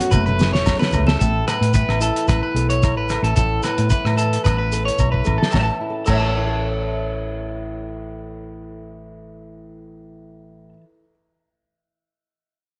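A light, small-room reverb and a rolled-off top give this short excerpt of carefree highlife guitar band music a soft, warm glow, moving at 111 BPM in a straight 4/4 in A major. Up front, a twangy electric guitar at the edge of break-up picks warm arpeggios, its tone colored by a warbly pitch drift and slapback echo, while a dark, fingerpicked flamenco guitar accompanies underneath with audible finger squeak. A round, hollow-body short-scale electric bass anchors the low end, and a cloth-damped, thuddy drum kit with a fat snare, tight kick, dark cymbals and a gritty, muffled character drives the groove, opening with a fill at 0.1 seconds and playing another before dropping out at 6.2 seconds. Grainy shekere sits close, ringing agogo bells chime in the background, and very quiet, high-tuned congas with hard hands appear only briefly near the start. The harmony moves from F#m to Asus2 at 1.2 seconds and settles on A at 5.5 seconds; once the percussion stops at 6.2 seconds, the guitars and bass carry on alone.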